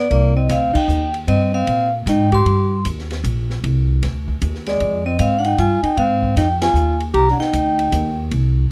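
A dry, close 1970s-style studio sound frames this cool, late-night excerpt of small-group swing and bop jazz in C minor, moving at 154 BPM in a swung 3/4 and tuned to A4 = 436 Hz. A bright, ringing vibraphone played with medium hard mallets and a slow motor vibrato carries the melody over a clear, up-front alto saxophone second line with jazz vibrato. A woody pizzicato upright bass with steel strings sits forward, and an open acoustic drum kit with dark cymbals, a high-tuned snare and a boomy kick adds crash, hi-hat and ride, while the band hits accents at 0.7 and 6.6 seconds as the harmony moves from Cm7 to Fm7 and back to Cm.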